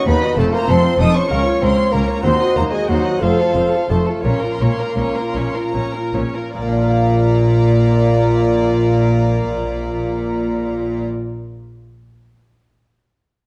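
A dark, distant solo bassoon carries the melody over gut-string chamber violins, a reedy viola section, rich cellos and double basses, and a delicate, very quiet fingerpicked lute in this dramatic, stormy baroque-style concerto movement in Bb minor and 6/8, which slows from 1.3 to 6.6 seconds before settling on a Bb chord in a wet recital-hall reverb.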